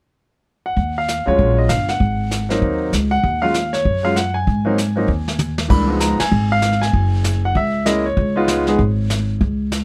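Relaxed and sophisticated, this brief swinging jazz piano trio passage in Db mixolydian at 194 BPM sets a clear, intimate baby grand piano with audible action noise up front on the melody, joined by a woody, thumpy pizzicato upright bass and a vintage brush kit with dark cymbals and a rolled-off top, heard dry and close, with a drum fill at 5.1 seconds leading into a second section where the band hits an accent at 6.2 seconds.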